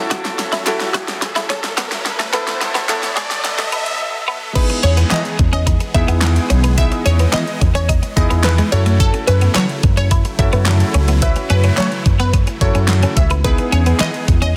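A dense, heavily limited mix with light reverb carries this euphoric, upbeat dance-pop excerpt, where a clear concert grand piano, huge detuned supersaw chords pumping under sidechain, a clean twelve-string electric guitar riff with analog chorus and a background riser build through a drum fill on an overdriven pop kit with a knocking kick and fat snare, joined by very quiet, crisp group handclaps, until a break at 4.0 s gives way to the drop at 4.6 s, where a bright, wave-folded unison pluck melody with delay enters, followed moments later by a growly, up-front woody fretless bass.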